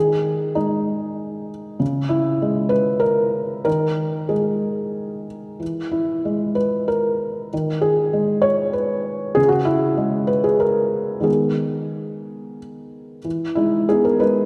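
A felt-muted upright piano plays alone from 0.0 s to 14.5 s, its mellow, thick-felt tone sitting up front with a short sustain inside a lingering concert-hall reverb, as this intimate, wistful fragment of neoclassical minimalist music drifts in a rubato 3/4 at 95 BPM in G# minor, moving through G#m, C#m and E harmonies between C#3 and C#5 before landing on an Emaj7 at 13.3 s.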